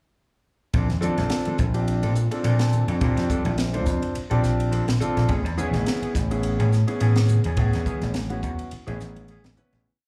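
Heard through a club PA with light reverb, this short electric jazz fusion piece has a soaring, slick feel and a gentle sixteenth-note swing, moving from Bbmaj9 to Amaj9 at 5.3 seconds. Up front, a punchy vintage slap bass plays a syncopated riff over a crisp, airy drum kit with a high-tuned snare and a fusion ride groove, while bright, very quiet congas add a loose pattern from 1.0 seconds. A dark baby grand piano with long sustain and slapback echo places rootless syncopated stabs, and a clean, fingered electric guitar with subtle chorus strums funk upper chord shapes in the background, carrying on through the fade-out from 7.6 seconds, which is capped by a drum fill.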